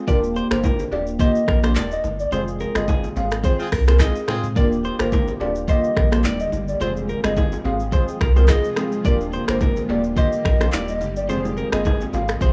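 An up-front electronic afro-pop drum kit with a deep kick, finger snaps, handclaps, rim clicks, shaker and toms drives this joyful, sunny afrobeats excerpt, joined by a thick, saturated sub bass, a glassy, crystalline wavetable pluck with chorus, a hollow, woody clarinet-like synth lead with vibrato and tape echo, a dark, clean fingered electric guitar riff, and bright vintage congas and bongos in the background, while a distant, roomy horn section slips in briefly at 3.6 seconds and a blurred, very quiet granular cloud pad arrives at 5.4 seconds, all captured on a dry, gritty cassette recording with small-room ambience.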